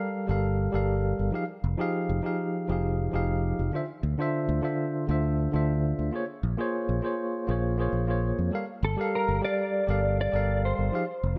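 Warm and smooth, this short sunset chillout passage, cut from a longer piece, moves at an easy, straight pulse. A clean tine electric piano carries the accompaniment from the opening second, heard up front as if through its built-in speakers and trailed by a digital delay. At 0.3 s a fingered electric bass enters with a round, punchy, amped tone that sits close and direct in the mix. The harmony drifts through lush minor ninth chords, Gm9, Fm9, Dm9 and Bbm9, before settling back on Gm9. At 8.8 s a mellow electric guitar takes the melody with a dark, compressed, fingered sound, coloured by ensemble chorus and digital delay. Light reverb gives the whole passage a soft sense of space.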